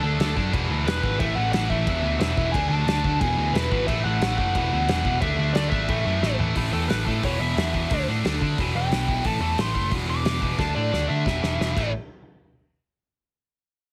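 The recording is dry, with a heavily compressed radio sound, and this upbeat, energetic punk rock clip is cut from a longer piece. A double-tracked, bright distorted electric guitar sits up front with an overdriven riff, while a growly, punchy picked electric bass, also overdriven and amped, runs beneath it. A loose indie drum kit in a pumping studio room adds dark cymbals, hi-hat, a medium-tuned snare, kick drum and toms with a rolled-off top, and it plays fills at 6.2 seconds and again at 10.6 seconds. A biting lead guitar with a warm, overdriven tone carries the melody and turns to a solo from 6.6 seconds. The harmony cycles through D, E, A5, E5 and D5 chords in a straight 4/4 drive until the chords stop at the close.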